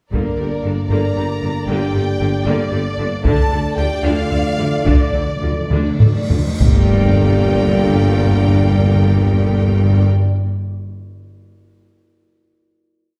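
Single big taiko strokes on hard sticks drive this dramatic, relentless epic orchestral film cue in G minor, a complete short piece in 6/8 at roughly 66-77 BPM. Above them, two violin sections carry the theme with vibrato: one smooth and even, the other lush and expressive, doubling the tune at the octave. Beneath them, a rich viola section plays a driving ostinato in the background, and a bright, distant cello section pushes a bass ostinato, doubled by a soft-attacked double bass section and a tuba. A mellow French horn section and a very quiet trombone section add sustained chords as the harmony moves from G minor to D minor and back. The tempo begins to slow at 2.5 seconds, round, dry timpani on soft mallets enter at 3.2 seconds with a fill, and a huge, bright cymbal swell leads into a low impact on the final G minor chord at 6.6 seconds, with the taiko falling silent at 7.8 seconds. 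The orchestra is heard from further back in a reverberant recital hall.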